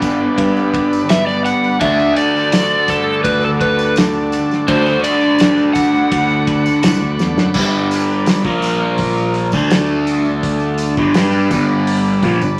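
This trippy, kaleidoscopic psychedelic rock excerpt opens with a phaser-swept, overdriven semi-hollow guitar riff up front over buzzy vintage combo organ chords, a very quiet shimmering tanpura drone, a thuddy cloth-damped drum kit with dark cymbals and a jingly tambourine in the background, as a barky, lightly overdriven tine electric piano takes the bass line from 0.4 seconds and a fingered slide guitar sings its melody from 1.1 to 7.5 seconds before a drum fill leads into the next section, all under vinyl crackle and moderate studio reverb.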